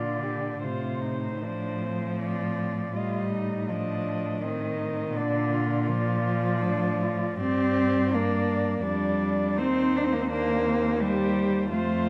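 Four bowed cellos, each played con sordino by a single player, open together in a serene, lyrical classical passage in Bb major, moving in a rubato 3/4 at 71-88 BPM. A high melody with light vibrato floats over a second line, while the up-front accompaniment and bass cellos add vibrato and portamento, their dark, veiled tone moving through Bb, F/A, Gm and Cm7/Eb. Close, detailed microphones and a moderate scoring-stage reverb frame this 12.1-second fragment of a longer piece.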